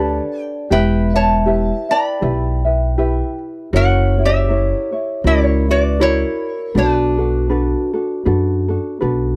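A bright, nasal lap resonator guitar carries the melody up front in this dreamy, relaxed Hawaiian piece, played with slide and fingerpicks for a metallic edge. Beneath it, a woody, dark upright bass on steel strings is plucked pizzicato and sits up front too, with a touch of transformer saturation. A mellow, thumb-plucked ukulele supplies light accompaniment, while a ringing vibraphone struck with medium mallets, motor off, traces a second line in the background. All four parts play throughout the 9.4-second cut, drifting through Gadd9, Em, F#7 and Bm7 with a gentle swing in 4/4. The sound is dry and close, like a 1970s studio recording, with only a small room's reverb around the players.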